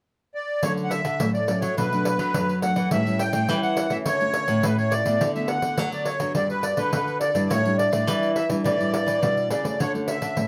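A short, lively cut from a longer samba and choro piece, captured live in one room with a wet studio ambience, moves at 105 BPM in a straight 4/4 in D major, its joyful mood carried by a reedy, sweet accordion melody up front with light tremolo tuning that enters at 0.3 seconds. From 0.6 seconds a small fingerpicked nylon-string guitar fills in the accompaniment while a full-bodied, classical-toned second nylon-string guitar takes the bass, and a jingly, close and dry pandeiro played with hard hands drives the rhythm. The harmony moves through Dmaj7, Bm7, A7, Gmaj7 and A7sus4 before settling back on Dmaj7 at 9.8 seconds.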